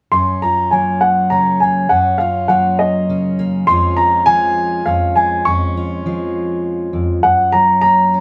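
The recording has the sound of a band playing live in one room, softened by a moderate studio reverb. It is hopeful, nostalgic indie folk in 6/8 at 67 BPM (counted in dotted quarters), with a straight feel and a building arrangement, cut from a longer piece. A warm, woody upright piano carries the melody up front from 0.1 s to 8.2 s, its present, polished tone marked by long sustain. Beneath it, a fingerpicked steel-string acoustic guitar with fresh strings and a full-bodied jumbo character plays the accompaniment, also up front for the whole passage. The harmony moves from Gbmaj7 to Db/F at 3.7 s and back to Gbmaj7 at 7.2 s, giving the music its wistful, forward-looking glow.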